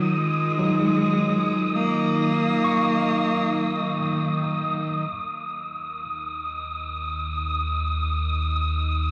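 Ambient music in free time and Eb minor, serene and melancholic, cut from a longer piece and captured as a home cassette recording washed in wet studio reverb. A biting, up-front cello with light vibrato and an airy bow sings the melody through analog delay until 4.2 s, while a worn, slightly out-of-tune tine electric piano spins arpeggios through its built-in speakers. Beneath them, a tense, detuned string-like drone with phaser and vibrato and a breathy, wind-like tuned noise texture sustain throughout, and at 5.1 s the Ebm7 harmony gives way to a deep, round analog bass with a fast attack that holds a low Eb to the close at 9.1 s.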